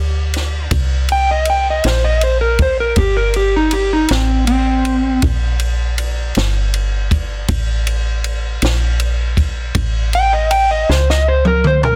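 A laid-back, gritty slow blues in 12/8 at 53 BPM, this short excerpt features an up-front electric slide guitar soloing with a dark, slightly broken-up tone over chords moving from C7sus2 to A at 7.5 seconds. A woody, round FM bass holds down the low end, while a compact cocktail drum kit enters at 0.3 seconds with a punchy kick, dark cymbals and a high-tuned snare carrying soft clipping, closing with a fill at 10.9 seconds. The dry kit sits in a small room, and the master is dense and heavily limited.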